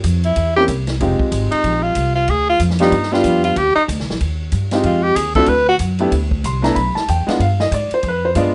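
A brisk swung 4/4 groove from a big-band-style drum kit, with ride cymbal, hi-hat, punchy kick and medium-tuned snare, sits beneath a woody, plucked upright bass in this relaxed, sophisticated slice of small-group swing and bop cut from a longer piece. A clear, up-front tenor saxophone takes a soft-attacked solo with vibrato from 0.3 to 5.8 seconds, while a smooth, vintage grand piano with short sustain comps through rich chords such as C7b9, Fm9 and G7b9. The studio sound carries moderate reverb and a gently rolled-off top end.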